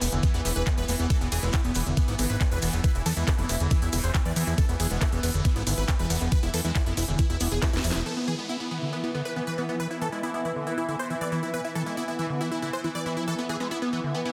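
A knocking electronic kick sits up front in this alien, psychedelic trance excerpt, layered with an electronic drum kit of handclaps, crisp low-passed hats, a ride cymbal and a cracking snare, all re-recorded in a small room. Beneath it, a fat, saturated analog bass blends sawtooth and square waves into a detuned, plucky low end, while grainy maracas drift in the distance. A punchy, detuned supersaw stab carries the melody through phaser and tape echo, and a squelchy, resonant acid bass riff with the same effects threads around it. A bubbling stepped-filter texture holds sustained chords with chorus, and a cloudy granular pad blurs into the background, both breathing with sidechain pumping. After a drum fill from 7.6 seconds closes the drop, the kick, drum kit, analog bass and maracas stop. The stab, texture and pad play on, and the acid bass carries a filter sweep from 8.1 seconds while a faint downlifter sinks through the dense, heavily limited mix.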